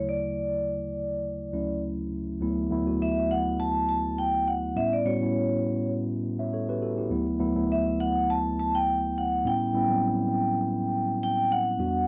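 A ringing, metallic vibraphone struck with medium hard mallets and colored by slow motor vibrato carries the melody up front through this silky, cinematic soul excerpt at 102 BPM with a light 16th-note swing, over a mellow tine electric piano heard through its built-in speakers and moving through Dmaj7, D69 and A9 chords in a dry, close 1970s-style studio sound touched by light reverb.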